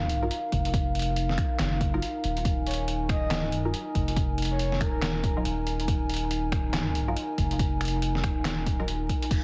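A round, soft dub sub bass sits up front on an Ebmadd9 chord in this dark, meditative deep dubstep excerpt at 140 BPM, with a half-time, swung feel in Eb minor. An overdriven electronic kick and a muffled, pitched-down trip hop sampler-style kit of snare, hi-hat, handclaps, finger snaps and crash drive the groove under a moody, nasal analog pad with chorus, while a muted, detuned chord stab pluck drifts in the background through phaser, analog chorus and dub echo. From 2.7 to 5.4 seconds a breathy, flute-like synth lead with vibrato, lush chorus and dub echo joins in, all set in moderate spring reverb with a heavily compressed radio sound, vinyl crackle and faint mains hum.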